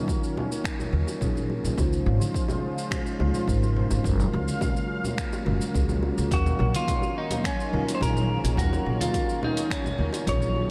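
A straight 4/4 groove at 106 BPM comes from a gritty, sampler-style soul kit of finger snaps, hi-hat, shaker and congas over a punchy, overdriven electronic kick, with very quiet bongos and congas beneath, setting a relaxed, smooth sunset chillout mood as a woody pizzicato upright bass sits up front from 0.9 s, a mellow tine electric piano with tape echo and a thick, detuned unison pad with chorus carry the chords Ebm7, Dbmaj7 and Gbmaj7, and a clean, picked electric guitar with lush chorus and tape echo takes the melody at 6.3 s, in a dreamy mix soaked in huge ambient reverb.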